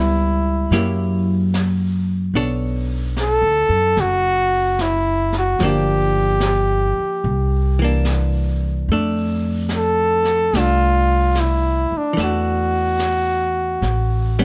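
A gently swung four-beat lilt carries this tender, intimate jazz ballad fragment, where an up-front, breathy trumpet with scooped notes and a plate-reverb sheen sings the melody over dark, clean hollow-body guitar chords, a woody pizzicato upright bass, and a distant, roomy brush kit with a high-tuned snare that enters at 0.7 seconds, the whole set in a moderate studio ambience.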